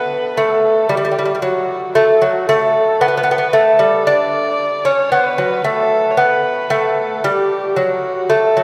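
Festive and passionate, this brief passage from a longer Persian modal ensemble piece moves in a three-beat metre with a straight feel. An acoustic lute carries the melody from 0.0 to 8.6 seconds. It is fingerpicked and delicate, its doubled gut strings, some tuned in octaves, giving it a warm tone that sits up front in the mix. Above it, a single bowed kamancheh plays a quieter second line across the same span. The kamancheh has a rich, intimate voice with light vibrato, a soft attack, portamento and an airy bow, heard close to the listener. The two parts bloom in the wet reverb of a church or concert hall, lending the performance a spacious, resonant setting.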